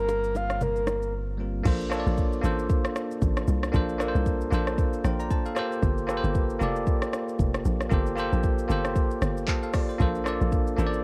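This short cut from a longer piece has the dry, close sound of a home cassette recording, with tape grit on the lead and the drums. It is a relaxed, soulful amapiano groove in Bb major at 115 BPM in 4/4, with a gentle sixteenth-note swing. It opens under a filter sweep: a breathy, flute-like synth lead with chorus, vibrato, delay and a soft attack floats over a round sub bass, while bongos and congas with hard hands sit in the background. A bell-like tine electric piano carries Gm11 and Bbmaj9 chords throughout, and the layered deep house kit plays deep kick, smooth hats, handclaps, rim clicks, shaker and crash. After a short break at 1.1 seconds, the drop arrives at 1.7 seconds and a punchy, tightly decaying log drum bass takes over the low end for the rest of the clip.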